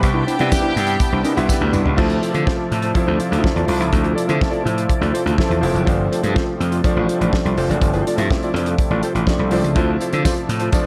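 A straight 4/4 disco groove at 123 BPM, joyful and glamorous, rides on a damped 70s drum kit with a fat snare and tight kick and a punchy, overdriven slap bass up front, while a mellow electric guitar, an intimate concert grand piano with audible action noise, and a thick tonewheel organ with key click and chorus vibrato fill out the harmony over Cmaj9, Dm7 and G9sus4, as earthy chamber strings play only until 1.7 s, a jingly tambourine sits in the background, a drum fill at 1.5 s leads into the next section and the piano adds its own fill at 5.1 s in this short excerpt from a longer piece.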